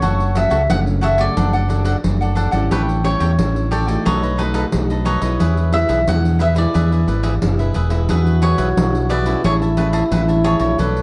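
Joyful and festive, this short samba and choro passage moves at 89 BPM in A major, with a crisp, picked cavaquinho melody over a second cavaquinho's accompaniment and a fingerpicked nylon-string guitar whose fresh strings and finger squeaks sit in the background. A bright, fingered electric bass stands up front while a jingly pandeiro played with soft hands sounds distant in a large room, all set in moderate studio reverb with a dark production. At 8.1 seconds a punchy, close-miked trombone enters over the E chord with forceful, scooped jazz-style notes, shortly before the harmony settles onto Amaj7.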